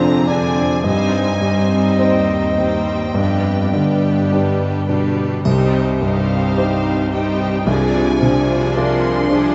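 A moderate concert-hall reverb wraps this brief excerpt of a tragic, passionate Romantic movement for piano and orchestra in C minor, moving at a rubato 51-56 BPM in 4/4. An intimate, up-front grand piano carries the melody with audible action noise and long sustain, joined high above by a rich, vibrato-laden violin section also carrying the melody, while a present solo clarinet and a lush second violin section trace second lines over a smooth viola accompaniment, very quiet mellow French horn chords and a distant, focused cello bass. At 5.5 seconds, as the harmony settles on C minor, very quiet timpani on a low C and a dark, dry triangle in the background join the texture.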